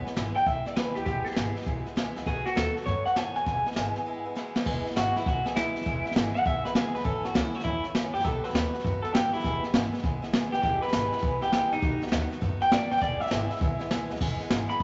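A twangy, slightly broken-up electric guitar through a small old amp, bathed in spring reverb and sitting up front, leads this upbeat, rollicking rockabilly excerpt in a swinging feel, taking a clean solo from 4.7 seconds after a brief break and brush drum fill, over a boxy picked acoustic guitar, a woody, thumpy pizzicato upright bass with gut strings, and a smooth jazz brush kit with dark cymbals and a boomy kick, all set in a moderate studio reverb with a rolled-off top.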